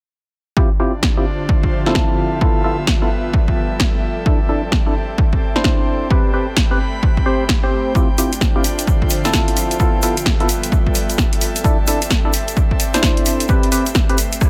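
Late-night and bouncy, this swung two-step garage excerpt rides on an up-front, overdriven electronic kick and a punchy analog drum machine of hi-hat, rim click and snare, both carrying the sound of a large room. Hollow, dark organ stabs with lush chorus and dub echo move through Dm11, G13, C6 and Am9, over a mellow, ethereal pad in the background and a bright, breathy second pad, both with sidechain pumping. A grainy egg shaker joins quietly at 8.0 seconds.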